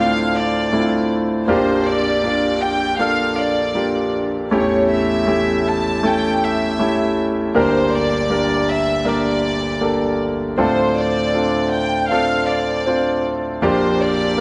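Pop ballad in D minor at 79 BPM, longing and melancholic, where a reedy, gut-string violin section with light vibrato carries the melody over a clear concert grand piano whose deep bass and long sustain support chords moving from Dm7 through Bb6, A7 and Gm, both parts playing throughout and set up front in a wet scoring-stage reverb with a dark top end, tuned slightly high to A4 = 441 Hz in this short cut from a longer piece.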